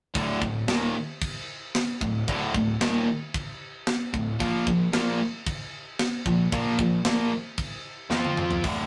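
Relentless and heavy, this short heavy metal passage, cut from a longer piece, drives forward at 113 BPM in a straight 4/4 in D minor. Two electric guitars carry the riff: an overdriven, picked guitar sits up front with a bright edge, while a high-gain distorted guitar, also picked, stays further back in the mix. Underneath, a fuzz-laden picked electric bass adds a growly, overdriven low end from the background. The acoustic drum kit is up front, with a tight kick, a medium-tuned snare, hi-hat, toms and crash cymbal, its sound saturated and gritty with a rolled-off top. The harmony moves from D5 to Bb5 at 4.4 seconds and lands on F5 as a drum fill arrives at 8.1 seconds. A small room's reverb gives the whole performance the rough, close feel of a rehearsal-room recording.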